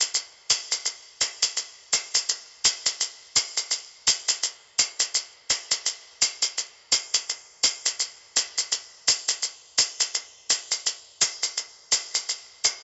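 Hypnotic and brooding, this trip hop excerpt moves at 84 BPM in 4/4 with a 60% swing on the sixteenths. Acoustic maracas with a group handclap sit up front and carry the whole 12.8 seconds, recorded in a small room with light reverb and a dull, muffled top end. The material shifts into a second section at 5.9 seconds.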